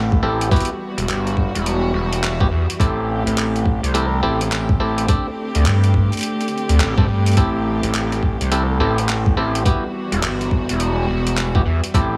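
Funky and playful, this glitch hop excerpt swings its 16ths at 105 BPM in A dorian, cycling through Am7, Emadd9 and D7sus4 over about 12.2 seconds. A gritty, aggressive synth bass sits up front with a saturated, wave-folded sawtooth bite, while an overdriven, thumpy electronic kick and a compressed boom bap sampler kit of handclaps, hi-hat and rim click give the groove a crunchy, small-room grit. A twangy, stringy clav plays stabs through a combo amp with dub echo and sidechain pumping, and a dark, intimate chamber string section holds soft-attack bowed chords with light vibrato that also pump against the beat, all set in a light small-room reverb.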